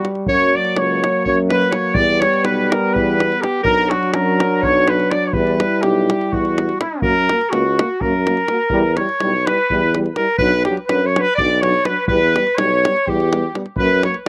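Dry and open-air with little reverb, this fiery, virtuosic Balkan brass band excerpt races in 7/8 at 249 BPM in E dorian sharp 4, as an up-front trumpet with light vibrato and a slapback echo carries the melody over a bright clarinet second line, while a soft-attack euphonium in the background and a smooth-topped trombone fill the accompaniment, a vintage-toned tuba joins on bass at 0.3 seconds, and a deep, close davul drives the percussion through a cycling F#, Em and Bm progression.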